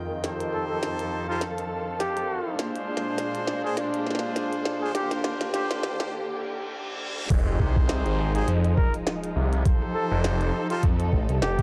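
A swung 102 BPM glitch hop groove in 4/4 opens on a glitchy, overdriven drum kit of clicky hats and tiny snare under dark, woody strings with 12-bit sampler grit and sidechain pumping, an airy, breathy pad, brilliant jazz-style horn stabs with tape echo, and a mellow solo trumpet melody, while a riser, reverse cymbal and sub drop build tension through a filter-swept build-up and a break at 6.1 seconds. At 7.3 seconds the drop lands with an impact, bringing in a thumpy, pitched-down electronic kick and a swirling, thick detuned saw bass with phaser and overdrive, both up front, as the chords, having moved from F7 through Bb7 and Ebmaj7, reach Fm7 and then return to F7. The gritty, swaggering mood is heightened by a dry, cassette-tinged hardware sound with light reverb, in this cut from a longer piece.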